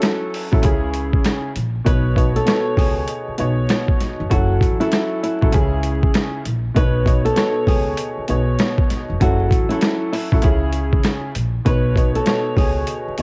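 A clear, worn, slightly detuned upright piano and a compressed, pitched-down sampler-style boom-bap kit with a thumpy kick and high-tuned snare open this gritty, moody hip-hop excerpt at 98 BPM with a swung 16th feel, joined at 0.5 seconds by a woody pizzicato upright bass on gut strings and at 1.9 seconds by a fingerpicked flamenco guitar melody, all cycling through F#m7, C#m and Badd9 in a dry home cassette recording dusted with vinyl crackle.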